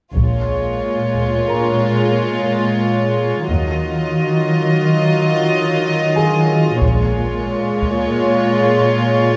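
Cinematic suspense score at 90 BPM in 5/4 and B-flat minor, uneasy and tense, where an up-front symphonic violin section carries a floating sul tasto melody over a distant, rich second violin line, soft-attack violas, an intimate cello section with light vibrato and a bowed double bass section that stops at 7.4 seconds, while a felt-muted upright piano adds mellow, vintage texture in the background from 1.5 seconds and a taiko ensemble strikes with heavy sticks in a small room at the opening and again from 6.8 seconds, set in a moderate scoring-stage reverb.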